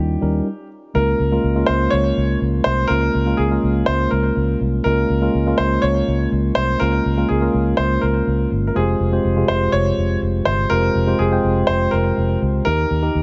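A punchy, foam-muted fingered electric bass sits up front in this dramatic, urgent 1980s-style pop excerpt at 123 BPM, alongside a mellow tine electric piano accompaniment and a polished concert grand carrying the melody, all three pausing for a brief stop from 0.5 to 1.0 seconds before moving through chords such as Db6 and Fmadd9 under light reverb.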